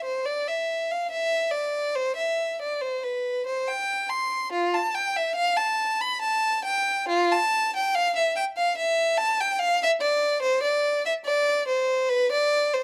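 Solemn and flowing, this short passage is a classical, baroque-style suite movement for unaccompanied violin, lifted from a longer piece. It moves at about 71 BPM in 3/4, with a rubato feel that lets the phrases breathe. A single bowed violin plays alone for the full 12.8 seconds, ranging from F4 up to C6. Its tone is rich and smooth, shaded with vibrato and kept even throughout. Close, detailed microphones and very little reverb put the player up front, so every nuance of the bow comes through clearly.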